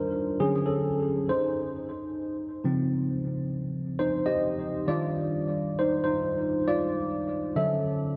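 A dreamy, reverb-soaked sound bathes this soulful, smooth R&B fragment at 67 BPM with a 16th-note swing, where a worn, slightly out-of-tune tine electric piano sits up front alone through lush chorus and analog delay, moving from Dmaj7 through Dbmaj9 and Ebmaj9 to Dmaj9 across a long hall tail before it is cut off at 8.2 seconds.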